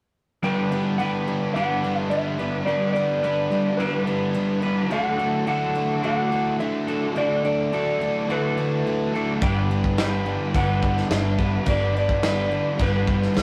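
Hazy and dreamy, this short cut from a longer rock piece leans into shoegaze and dream pop at 107 BPM in a straight 4/4, moving from G6 to Dadd9 and back to G6. From 0.4 seconds a dark, slightly broken-up electric guitar through a small old amp carries the lo-fi, compressed, fingered melody, while a picked twelve-string acoustic guitar shimmers with bright, octave-doubled arpeggios and a bit of finger squeak in the background. Three guitars stack riffs underneath: a biting overdriven one, warm and up front; a bright, double-tracked distorted one; and a thick, dark fuzz guitar. At 9.4 seconds a round, foam-muted vintage bass arrives alongside a loose indie drum kit, its tight kick, medium-tuned snare and dark crash cymbal sitting mid-forward. A moderate stone room reverb and the rough rehearsal-room sound, with its warm saturation, give the layers a blurred, enveloping haze.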